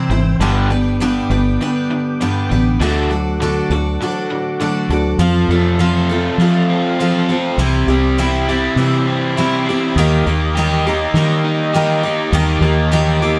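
A bright, shimmering twelve-string acoustic guitar carries the accompaniment in this nostalgic, jangly rock excerpt, its fresh-stringed, octave-doubled picking set up front at a straight 101 BPM in 4/4. Beside it, a double-tracked overdriven electric guitar plays a riff that also sits forward in the mix. A fingered electric bass comes in at 0.1 seconds with a warm, foam-muted tone, direct and amped. Far beneath them, a very quiet tonewheel organ holds sustained chords through a slow rotary speaker with chorus vibrato and a touch of grit. The harmony moves from G to D, then shifts at 5.2 seconds into a new section that passes through F and C before landing on Eb at 10.0 seconds, all set in a moderate studio reverb.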